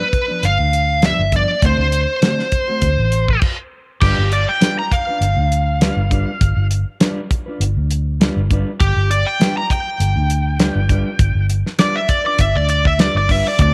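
Straight-eighth soul blues with a gritty, swaggering mood, cut from a longer piece. A smooth, overdriven lead guitar opens with a short picked melody over a damped 70s drum kit, with a tight kick and medium-tuned snare, and a vintage fingered bass that sounds dark, round and foam-muted. Beneath them, a mellow, clean electric guitar adds fingered stabs across the G7 and D7 changes. The band hits a stop at 3.4 seconds, and at 4.0 seconds a bright, overdriven slide guitar played with fingerpicks takes a solo over G7 for the rest of the recording. The dry drums, the bass and both lead guitars sit up front, surrounded by light reverb and studio ambience.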